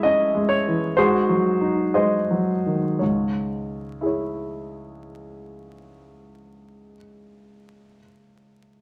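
Passionate and brooding, this short excerpt from a longer romantic character piece for solo piano sits in C# minor at a slow 56 to 66 BPM in 4/4, shaped with a free rubato feel. A concert grand carries everything alone from the start to 8.8 seconds, ranging from C#2 up to E5 with a warm, polished tone, deep bass and short sustain, placed present and up front. The harmony opens on C# minor over G# and moves to G#7 while the tempo slows through the first 3.0 seconds, then settles back onto C# minor as a new section begins. A large studio reverb adds a wet sense of space around the instrument, and a vinyl crackle lends the recording an aged quality. The tuning sits slightly low, with A4 at 439 Hz.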